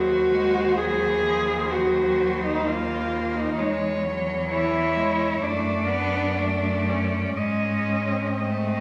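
Yearning and elegiac, this short classical fragment for cello ensemble moves at a rubato 60-66 BPM in 4/4, with a warm, smooth-topped bowed cello singing the melody over a dark, up-front second cello that slides expressively between notes, a clear, focused cello carrying the accompaniment, and a distant bass cello adding its own portamento and vibrato, all bathed in the wet reverb of a recital hall as the harmony passes from Cdim/Eb through C#m/E and D/F# to G#.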